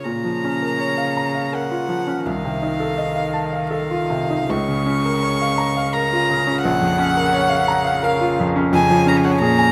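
Tender and serene, this excerpt from a slow romantic movement for piano trio drifts in 3/4 at 74-88 BPM with a rubato feel in Bb minor, moving from Bbm through F7/C and back toward Db/F. Up front, the violin sings the melody with light vibrato and an airy, sul tasto bow, while the cello's pure, floating second line sits more distant beneath it. A brilliant grand piano carries the accompaniment from low bass to high treble, all captured with close, detailed microphones in a moderate recital hall reverb.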